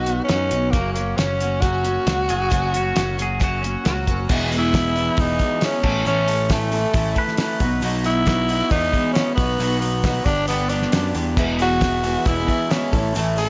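Jangly and open-road in mood, this straight-feel folk rock and heartland rock passage is cut from a longer piece. A growling tenor saxophone carries the melody up front, raspy and gritty with vibrato and a touch of analog delay, over a shimmering, octave-doubled twelve-string acoustic guitar and a twangy, slightly broken-up electric guitar riff through a small old amp, both sitting in the background. A round, dark picked electric bass anchors the groove from the start, joined at 0.1 seconds by a cloth-damped, thuddy drum kit with a fat snare, tight kick and dark cymbals. A clean, compressed pedal steel guitar adds a brief second line with volume swells and analog delay around 2.3 seconds, returning briefly at 7.2 seconds, and a grainy egg shaker joins very quietly at 4.3 seconds. Near the close, at 11.4 seconds, a mellow, boxy concert grand piano slips in very softly, all within light reverb and a small room ambience.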